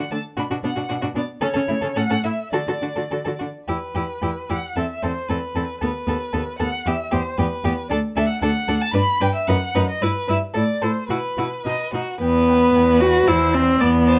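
Closely miked with light reverb, this spirited classical-period string quartet movement moves quickly at 113 BPM in 2/4 with a rubato feel, turning from D major to E minor at 3.7 s, as a warm, expressive first violin sings the melody with vibrato and portamento, a smooth second violin and even viola fill the middle, and a focused, up-front cello anchors the bass.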